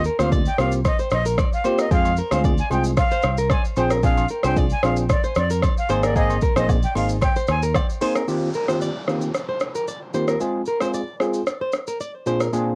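A breathy, reedy jazz flute with tape echo floats over round fingered electric bass, an overdriven afro-pop drum kit with deep kick, metallic hats, rim click and shaker, a fingerpicked flamenco guitar riff with finger squeak, barky bell-like tine electric piano in lush chorus, and background agogo bells and woodblock, giving this sunny, breezy afrobeats excerpt a cassette-home-recording feel until the flute and bass drop out near 7.8 seconds and a downlifter sweeps in at 8.3 seconds over the Eb6 and Fm chords.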